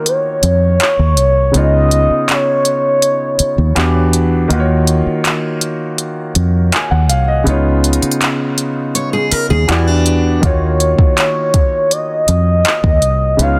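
A gliding, detuned portamento lead with chorus, vibrato and tape echo carries a soft-attack, sustained melody at the opening and returns at 10.4 seconds in this late-night, longing contemporary R&B excerpt, over a polished, present grand piano, a produced drum kit of soft kick, smooth hi-hat and handclaps, and a round, dark fingered electric bass, while a fingerpicked steel-string acoustic guitar adds brief arpeggios from 8.9 seconds, set in light reverb within a dense, heavily limited modern master.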